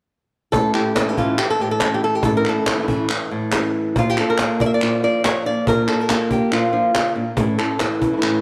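A fingerpicked flamenco guitar leads this intense, dramatic fragment, its fresh strings sounding bright and up front as the melody ranges from A2 to E5. Beneath it, a second flamenco guitar plays thumb-plucked stabs with a dark, boxy tone, while a snappy cajon with snares, struck with hard hands, adds a compressed, saturated punch. Crisp palmas hand claps join at 0.7 s and sit distant, as if in a large room. The harmony holds on A, shifts to Bb at 4.0 s and returns to A at 7.4 s, in a tuning set slightly below standard pitch at A4 = 436 Hz. A wet echo chamber reverb and small room ambience surround the playing, and the passage is cut from a longer piece.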